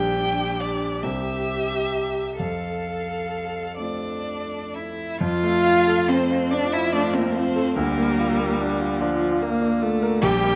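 A warm, serene passage from a slow romantic movement for piano quartet opens with all four players together in a rubato 6/8: a rich, somewhat distant violin sings the melody with vibrato and portamento, while a smooth, even cello carries a prominent second line. A clear, up-front concert grand adds deep bass beneath a viola whose expressive, smooth-topped tone also bends with portamento in the accompaniment. Close, detailed microphones and a moderate recital-hall reverb frame this fragment, whose opening phrase returns at 5.2 seconds.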